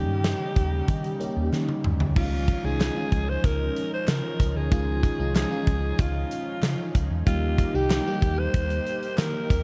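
A breathy, raspy alto saxophone carries the melody from the first moment, its bright vibrato trailed by digital delay. Beneath it sit an FM electric piano layered with a soft pad, dreamy and detuned under chorus and phaser, and a thick, slow-attack unison pad glowing in the background. A round, punchy hollow-body bass anchors the low end, and the big rock drum kit arrives at 0.2 seconds, up front with a fat snare and tight kick, playing a fill from 1.5 to 2.2 seconds as the harmony shifts from Eb7 to Dbadd9. A very quiet, crisp group handclap joins at 2.8 seconds. This romantic, glossy slice of 1980s-style pop has a dark production, lightly touched by reverb and small-room ambience, and it moves to Eb at 7.3 seconds.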